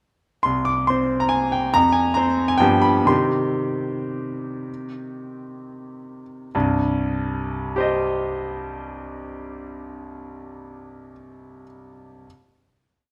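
A brilliant, up-front concert grand opens this short, nostalgic and bittersweet classical piano waltz in C minor, tuned to A4 = 436 Hz, playing a single-line melody over a deep waltz bass in a rubato 3/4 that ranges from 88 to 147 BPM, slowing from 2.4 to 6.5 seconds before settling on a final C minor chord held in a moderate recital hall reverb, captured by close, detailed microphones.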